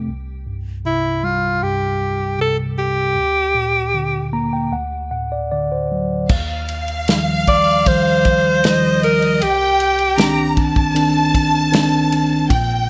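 An up-front alto saxophone carries the melody from 0.9 seconds, its clear, jazz-inflected solo line shaded with vibrato and set over a melancholic, heartbroken pop ballad at 78 BPM in a straight 4/4. A mellow tine electric piano holds the accompaniment throughout, heard through its built-in speakers and placed close and clean, and it adds a fill from 3.9 seconds. At 6.3 seconds the second half opens on an Ebadd9 chord as a studio violin section enters with a focused, bowed second line in a high register, alongside a loose indie drum kit. The acoustic kit brings a tight kick, a medium-tuned snare, ride and crash cymbal, all sitting in a small room. The harmony moves from Gm/D and D toward Cmadd9, and a small room ambience surrounds this short excerpt cut from a longer piece.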